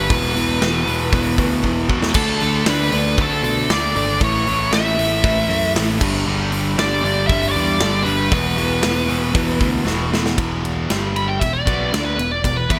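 Bright digital production in a 1980s style, with light reverb, frames this short cut from a longer hard rock piece at 117 BPM in straight 4/4, tuned to A4 = 437 Hz. A double-tracked, overdriven electric guitar drives the riff up front, its tone warm and picked. Underneath, a picked electric bass sounds growly and punchy, while a big, natural rock kit in a large room brings a tight kick, a medium-tuned snare, hi-hat, ride, crash and splash cymbals, with fills at 1.6 and 9.9 seconds. The biting lead guitar, overdriven and picked, carries the melody and breaks into a solo at 10.4 seconds. The harmony moves through E5, D5, A and G5 before returning to E5, and the mood stays energetic and anthemic.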